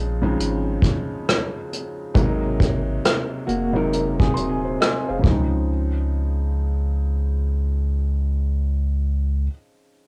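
A dry home cassette recording carries this mellow, nostalgic lo-fi hip hop fragment at 68 BPM in Db major with swung 16ths, where a soft, felt-muted upright piano with audible action noise and a deep, round sub bass sit up front beside a roomy brush drum kit with a punchy kick, hi-hat and rim click, while a dark, clean electric guitar with tremolo and analog delay adds a second line from 3.5 to 5.5 seconds.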